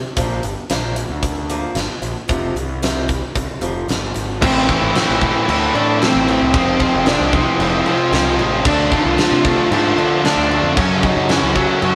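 A bluesy, distorted lead guitar carries the melody from 4.4 s in this dark, angsty fragment of quiet-loud alternative rock at 113 BPM in 4/4. It rides over a bright, up-front overdriven riff guitar, a double-tracked fuzz guitar sitting in the background, and a punchy fuzzed electric bass, with a barely audible tonewheel organ holding sustained chords through a rotary speaker. The piece opens with a boxy, swing-style picked acoustic guitar playing arpeggios until 4.4 s, and a huge arena drum kit with a fat snare and rolled-off top drives the whole stretch from 0.2 s, as the band plays live in a small room with moderate reverb.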